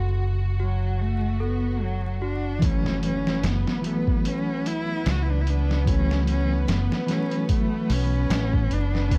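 A dark, crackling, vinyl-dusted production frames this brooding, hypnotic trip hop excerpt in F# minor at 74 BPM with a swung 16th feel, where a deep, round dub bass and a mellow guitar with harmonic tremolo sit under smooth violin chords roughened by vintage 12-bit sampler grit, a delicate, slightly out-of-tune celesta arpeggiates until 2.6 seconds, an expressive bowed cello melody with portamento enters at 0.6 seconds, and a thumpy, pitched-down boom bap kit arrives at 2.6 seconds alongside an electronic impact as the harmony moves from Bm7/F# to F#m7.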